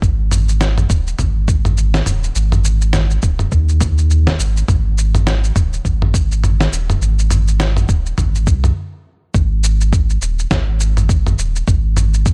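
A swung 16th-note groove at 103 BPM in 4/4 drives this earthy organic downtempo excerpt in Ab major, where a gritty, thumpy electronic kick and a dusty soul sampler-style kit of shaker, fat snare and toms sit up front with compressed, tape-toned character and small room ambience, over a deep, round sine sub bass that pumps from sidechain compression, before the groove halts for a brief stop from 8.8 to 9.3 seconds and a new section begins.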